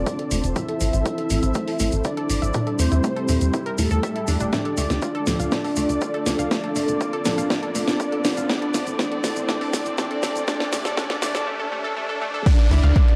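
Driving and melancholic, this melodic techno excerpt in D minor at 121 BPM is a build-up cycling through F, Am, Edim and Dm. An overdriven, punchy electronic kick leads up front with a house drum kit whose cracking snare, hi-hat and crash sound tape-warm, joined by a grainy, close tube shaker. A tight sawtooth sequencer bass drives beneath. A fat, detuned analog lead carries the melody with vibrato and tape echo, over a bold polysynth second line with cassette tape character and delay. In the background sit a moody analog pad holding sustained chords, chorused pluck arpeggios, and muted, phased dub chord stabs. A very quiet, ethereal airy pad adds texture. Filter sweeps move across the lead, polysynth, pluck and stabs throughout, while the lead, polysynth, pad, pluck, stabs and bass pump with sidechain compression. A drum fill runs from 4.5 to 11.5 seconds, background riser, swell and downlifter effects enter at 2.2 seconds, and a swell arrives at 11.5 seconds. 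The production is dark, set in a moderate lush hall reverb.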